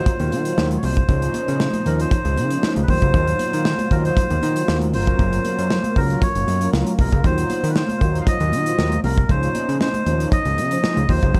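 Early-eighties boogie funk at 117 BPM in Eb dorian, this slick, late-night excerpt sets a reedy, breathy melodica melody over round, dark synth brass with chorus, a lush, airy pad washed in phaser, an up-front acoustic drum kit with a tight kick in a pumping room, very quiet high-tuned congas, and a fat, saturated analog bass with a filter pluck, moving through Ebm69, Dbmaj9 and Gbmaj7 chords under light reverb.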